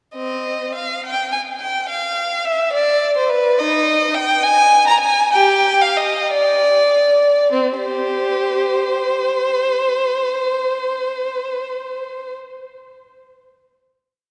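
A lone violin, bowed by one player and placed up front, carries this grave, introspective baroque-style suite movement in C minor, tuned slightly below modern pitch at A4 = 437 Hz. Moving in a rubato 6/8 with the dotted-quarter pulse ranging from 46 to 72 BPM, the melody spans C4 to Bb5 with vibrato, portamento and an expressive, smooth top, weaving double stops and spread chords into the line. The opening phrase runs from the start to about 7.5 seconds, slowing down between 2.7 and 7.5 seconds. A final chord then sounds from 7.5 to 12.2 seconds, with the violin falling silent at 12.3 seconds. The whole brief piece sits in a wet church acoustic with a long 3.5-second decay that gives the solo instrument a resonant, spacious halo.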